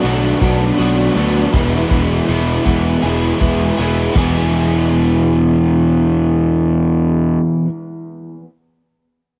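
Wistful and hazy, this short excerpt of shoegaze-leaning dream pop rock moves at a slow 80 BPM in a straight 4/4, centered on E major. A clean, compressed twelve-string electric guitar spins arpeggios in the background through ensemble chorus and analog delay, while a biting overdriven guitar sits up front with a riff smeared by reverse reverb, and a dark semi-hollow guitar adds its own overdriven riff bathed in lush chorus. Beneath them, a round, fuzz-laden picked bass pushes forward with a gritty overdrive, stopping at 7.4 seconds. A loose indie drum kit with a tight kick and rolled-off cymbals plays crash, hi-hat and kick in a small, dry room before dropping out at 4.3 seconds, leaving the guitars and bass to carry the passage. The harmony moves from Bm7 to E at 1.5 seconds, and the whole piece has the close, dry, tape-worn character of a home cassette recording.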